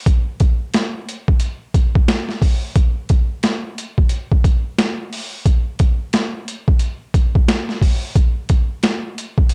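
Dark, lightly reverberant production frames this smooth, cool hip hop passage cut from a longer piece, where a boom bap sampler-style drum kit sits up front, its pitched-down, compressed hits carrying overdrive and vintage 12-bit grit, with a thumpy kick, a high-tuned snare and hi-hat swung on the sixteenths, all re-recorded in a large room.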